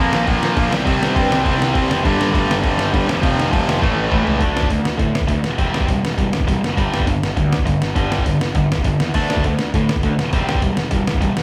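Recorded as a band playing live in one room with light reverb, this energetic, upbeat punk rock excerpt charges along at 203 BPM, a bright, up-front distorted guitar riffing throughout over a gritty, pitched-down sampler-style drum kit with a thumpy kick, while a compressed distorted guitar and a double-tracked fuzz guitar add background riffs that stop at 4.4 seconds after a drum fill, and a growly overdriven fuzz bass rumbles underneath chords such as Bb5, G5, D5 and C/E.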